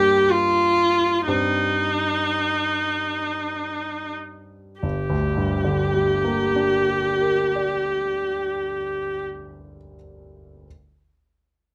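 Yearning and melancholic, this romantic classical duo for viola and grand piano moves in a rubato 3/4 at 43-65 BPM in G minor, tuned to A4 = 437 Hz, slowing over its first 4.8 seconds as the harmony shifts from G minor to C minor over G and back. The bowed viola sings a focused, vibrato-rich melody up front, while the concert grand supplies a smooth accompaniment with deep bass, a vintage character and short sustain, carrying on alone after the viola stops at 9.2 seconds. Close, detailed microphones and light reverb frame this passage, cut from a longer piece.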